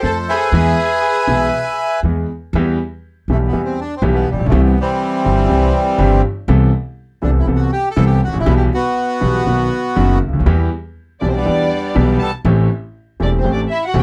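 A melancholic, passionate tango opens with a reedy, airy bandoneon carrying the melody over a clear concert grand piano with deep bass and a woody, thumpy pizzicato upright bass on gut strings, all three up front, while a distant, lush bowed violin section adds a soft-attack second line with vibrato and portamento until 2.0 seconds. The rubato feel gives the fragment a yearning, flexible pulse as the harmony moves through E minor, C and A minor colours before settling on a B chord and back. The violins return at 11.2 seconds, and the whole has a dry, close 1970s-style studio sound with light reverb.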